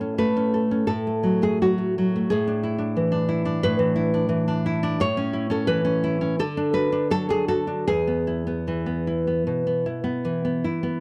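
A dark, lightly reverberant recording frames a tender, sunny romantic piece for solo nylon-string guitar, fingerpicked up front with a woody tone from old strings, moving in a rubato 4/4 between 74 and 92 BPM through a brief 11-second excerpt that drifts from A through F#madd9/A and E7/A before settling on A, D and E.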